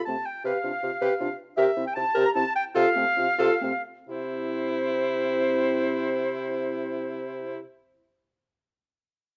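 A quick, cheerful and graceful classical-period movement for wind quintet in 3/4, played with rubato, sets the hollow, up-front concert flute on the melody from 0.0 s above a clear, close-miked oboe second line, mellow clarinet and distant, roomy French horn accompaniment, and a present bassoon bass on C3, the music slowing from 1.0 to 4.1 s within a moderate large studio reverb.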